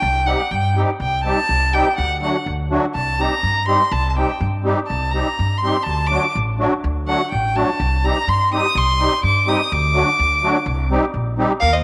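A straight 2/4 pulse at 124 BPM drives this fiery, bittersweet Balkan folk fragment in C Dorian sharp 4, cut from a longer piece. A clear, even violin, bowed with light vibrato, carries a solo from the start until 11.6 seconds, sitting up front over a plucked upright bass whose steel strings sound woody and growly, with transformer saturation adding grit. From 0.3 seconds a musette accordion fills in the accompaniment with a reedy, shimmering, dark tone from its wet musette tuning. The harmony alternates between Cm and D throughout. At 11.6 seconds a warm, focused fiddle with a smooth top steps in with the melody, the loudest part in the mix, just as the fragment closes. A wet spring reverb and small room ambience surround the ensemble.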